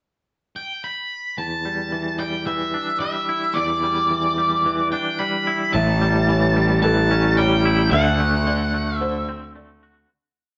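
Set in a straight 4/4 at 110 BPM, this brief post-rock piece in E minor has a melancholic, brooding cast. An octave-fuzz lead guitar opens at 0.6 seconds with a dark, distorted, motif-based melody built from sentence-like phrases, sitting up front between D5 and B5. At 1.4 seconds a twangy electric guitar enters with clean, picked arpeggios under tremolo, its tone warm and forward as the harmony moves from Em7 to A7 and then D7. At 5.7 seconds a felt-muted upright piano joins in the background with a soft, vintage ostinato of arpeggios, while a growly, overdriven picked bass drives eighth notes up front in the low register. The band sounds as if playing live in one room, with moderate large-studio reverb and a rounded top end, and the whole performance fades out from 7.9 seconds to its close at 10.1 seconds.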